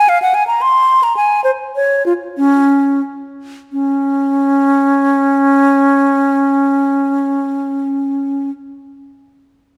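A close, up-front silver concert flute sits in a moderate stage reverb, its hollow, airy tone carrying a crisp attack and a straight, unwavering sound. This short, serene fragment of a baroque-style fantasia for solo flute moves in a dance-like triple metre with free rubato, roaming from Db4 up to C6. The opening phrase slows down until 3.7 seconds, where a second section begins and runs to 7.8 seconds, with the flute sounding until 8.5 seconds.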